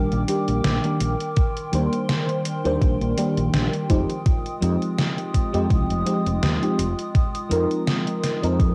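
A mellow, up-front FM electric piano with a soft pad layer provides the accompaniment in this hazy, nostalgic vaporwave fragment in F dorian at 83 BPM, its chorus, phaser, tape echo and cassette wear moving from Ebmaj7 to Fm9 at 3.9 seconds over a dark, warbling, detuned pad with lo-fi 12-bit grit. A round, woody fretless bass anchors the low end, while a gated 80s drum machine plays hi-hat and overdriven gated snare from the start and a thumpy, up-front electronic kick joins at 1.4 seconds. The whole short cut, taken from a longer piece, has the light reverb and soft haze of a home cassette recording.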